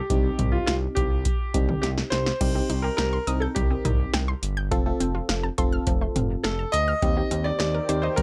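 Cool and nocturnal, this short synth-pop excerpt sets an open, long-sustaining grand piano melody with tape echo up front over a warbling, vintage FM electric piano with tremolo, a smooth sawtooth synth bass with vibrato, and an analog drum machine with deep kick, punchy snare and metallic hats, all in light reverb. After a drum fill from 1.8 to 2.4 seconds, a detuned, wave-folded unison pluck enters with echoing arpeggios, and at 7.5 seconds a thick, bright pad with chorus and phaser slips in very quietly, as the harmony moves from Cm to F to Eb6.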